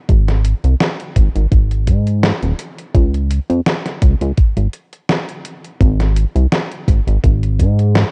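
Faded and dreamy, this short vaporwave excerpt moves at 84 BPM in 4/4 with a slight swing on the sixteenths, its dry, close sound carrying a cassette-tape patina. A dark, glossy chorused synth bass, built from pulse, sawtooth and triangle tones with ring modulation, wave folding and a plucky filter, sits up front between Eb1 and Ab2 with tube saturation. Alongside it, a thumpy electronic kick and a detuned 8-bit drum machine's hi-hat and medium-tuned snare share a gritty 12-bit sampler character, the drum machine's snare tape-warmed and re-recorded in a small room.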